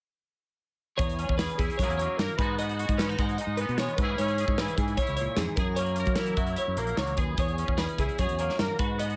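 A bright, compressed twelve-string electric guitar spins arpeggios over this wistful, intricate math rock and midwest emo excerpt at 150 BPM in E lydian, tuned slightly low to A4 = 437 Hz. Beneath it, a clean, scooped twangy electric guitar with ensemble chorus plays the accompaniment. A growling fingered bass, punchy and overdriven, sits alongside an airy, polished, up-front studio drum kit whose punchy kick and medium-tuned snare drive the straight 4/4 through chords such as E6, F#9 and G#m7, with every part playing from 1.0 to 9.2 seconds under light reverb.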